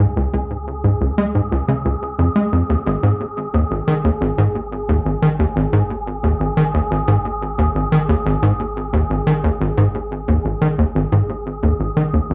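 A tight, punchy sequencer bass riff with a plucky sawtooth-and-square bite and cassette tape echo drives this luminous, expansive stretch of ambient space music at 89 BPM, cut from a longer piece, with a round sine sub bass sitting deep in the background and a breathy, wind-like tuned noise texture on Ab4 hovering dark and reverberant overhead, all in a wet room that evokes a home cassette recording.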